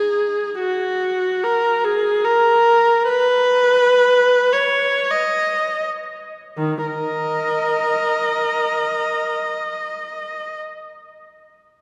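Meditative and mournful, this classical fragment from a longer piece features a single bowed viola in free time and Eb minor, its clear, smooth tone with vibrato ranging from Eb3 to Eb5 and sitting close and up front within a wet church reverb heard from further back, slowing through the opening phrase before a new section begins at 6.6 seconds.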